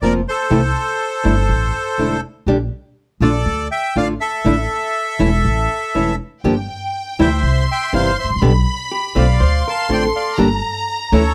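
A close, detailed recording with light reverb frames this dramatic, melancholic tango, cut from a longer piece and moving at 122 BPM in 4/4 with a rubato feel. A reedy bandoneon carries the melody up front, while a small, fingerpicked nylon-string guitar supplies the accompaniment, also close and present. Beneath them, a pizzicato upright bass on gut strings gives a woody, thumpy low end. At 6.4 seconds a symphonic violin section enters with a smooth, bowed second line high above, colored by light vibrato. Near the close, at 8.9 seconds, a dark, clean hollow-body electric jazz guitar adds a brief picked, compressed line, as the harmony moves through chords such as Asus4, Dm7 and Gm.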